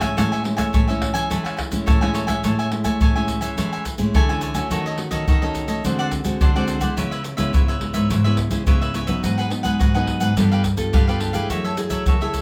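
A straight 4/4 pulse at 106 BPM drives this festive, joyful slice of samba and choro in A major, cut from a longer piece. Up front, a percussion section of egg shaker, deep surdo, pandeiro and tamborim sounds compressed and saturated, carrying the groove for the full 12.4 seconds. Above it, a bright, crisp cavaquinho picks its accompaniment in a high register, while a fingerpicked classical nylon-string guitar fills the middle with a warm tone. A second nylon-string guitar handles the bass line, full-bodied and fingerpicked, with audible finger squeak. The harmony moves from Amaj7 through D#m7b5, D7#11, C#m7, G#m7 and G9 before landing on F#m9 at 11.5 seconds, all set in a light reverb.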